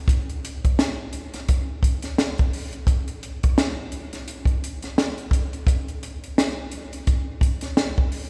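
A compact cocktail drum kit carries this short R&B excerpt on its own, playing hi-hat, kick drum and snare drum from 0.1 to 8.3 seconds. The kit sits up front with a dark, smooth tone and a rolled-off top, pairing a punchy kick with a high-tuned snare. Set in 4/4 with a swung sixteenth-note feel, the groove has a warm, soulful mood. The recording places the drums in a church or concert hall, where a moderate cathedral reverb with a long tail surrounds the warm, up-front character of the kit. Cut from a longer piece, the passage stays within a single section throughout.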